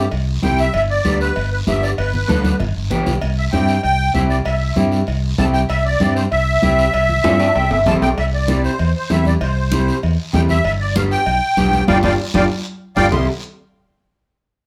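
Cumbia with a sunny, festive lift, this excerpt puts a reedy, shimmering musette accordion up front on the melody over a dark, slightly broken-up electric guitar and a bright, growly fingered electric bass. Hard-handed congas with a thick skin, ringing metal cowbell and timbales, and a raspy guiro fill out the percussion. Drum fills punctuate the groove, a clean guitar fill arrives at 7.2 seconds, and the band hits a shared accent at 11.9 seconds before the passage resolves.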